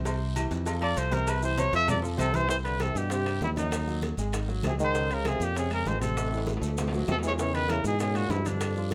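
Afro-Cuban jazz cut from a longer piece, sunny and danceable, where a growly, punchy fingered electric bass sits up front with a vintage trumpet showing light vibrato and scooped notes, a smooth-topped trombone entering at 2.2 seconds, an intimate concert grand with audible action noise in the background, and very quiet congas, tight saturated cowbell and bongos, ringing metal-shelled agogo bells and timbales, woody claves, raspy guiro and grainy maracas, with a drum fill at 6.2 seconds.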